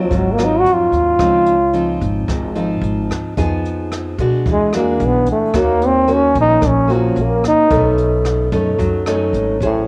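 Intimate and smooth, this short bossa nova excerpt moves at 111 BPM in straight 4/4, with a mellow, breathy trombone taking an up-front solo of scooped, jazz-style notes, tinged by cassette tape. Beside it, a fingerpicked nylon-string guitar with finger squeak and a deep classical tone plays chords such as Dbmaj9, Fm7b5 and Ebm7, while a woody, thumpy pizzicato upright bass anchors the low end. A jazz brush drum kit, airy and polished with a boomy kick, hi-hat and rim click, also carries a cassette-tape colour, and the whole home recording sits in light reverb and studio ambience.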